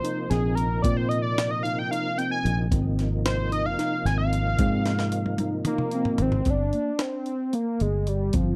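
A bold, warbling octave-doubled analog synth lead solos up front over a tonewheel organ with key click and slow rotary swirl, a mellow tine electric piano's background arpeggios, a gritty, pitched-up breakbeat kit with a thumpy kick and high-tuned snare that fills from 4.9 to 6.5 seconds, and a dark, round fingered bass entering at 0.3 seconds, giving this dry, close 1970s-style progressive excerpt in 7/8 a driving, tense urgency.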